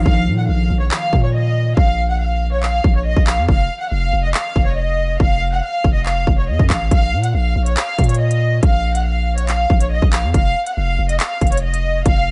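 A dark, reedy violin section opens this ominous, cold drill excerpt at 140 BPM in a half-time 4/4 feel, set in Bb harmonic minor, joined from the start by a concert harp and a deep, sine-toned 808-style bass. The violins carry the melody between Db5 and Gb5 with light vibrato and a gut-string, period-style tone, bowed as an ensemble that sounds distant yet sits up front. The fingerpicked harp rings softly in the background before dropping out at 2.3 seconds. The long bass notes hit with a fast attack and decay mellowly, sitting up front beside an electronic drum kit of hard-clipped kick, crisp hi-hats and handclaps. The opening stretch until 6.9 seconds forms a break, and the harmony moves through Bb5, F7(no3), back to Bb5 and on to Ebsus2/F inside a digital ambience that keeps the top end dull and cold.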